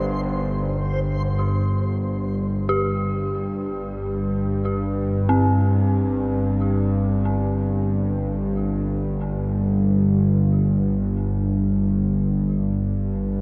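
A huge, wet space with an 8.7-second reverb tail frames this ominous, vast dark ambient drone in free time, cut from a longer piece, where an up-front, tense, string-like bowed drone with ring modulation and vibrato sustains from G1 to G2 under a filter sweep across a Gsus4 harmony, while a quieter, eerie, inharmonic synth bell, detuned and FM-toned, spins decaying arpeggios between C4 and G4 through chorus, delay and shimmer reverb.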